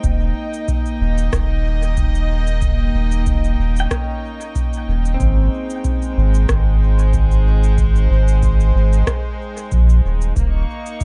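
A soft, round sub bass sits up front in this hazy, peaceful ambient dub passage, its deep, sustained notes with a fast attack holding the floor until about 10.7 seconds. Above it, a studio string section bows sustained chords with light vibrato and a reedy, gut-string, period-style tone, moving from Eb7 to Abmaj7. A bright, twangy electric pedal steel guitar, played with fingerpicks and slide, traces arpeggios with volume swells and dub echo, falling away at 8.2 seconds. An analog-sounding electronic kick stays in the background, while an overdriven electronic shaker and rim click, re-recorded in a small room, carry their own dub echo over a gently swung 4/4. The mix is dry and echo-heavy, and the passage is cut from a longer piece.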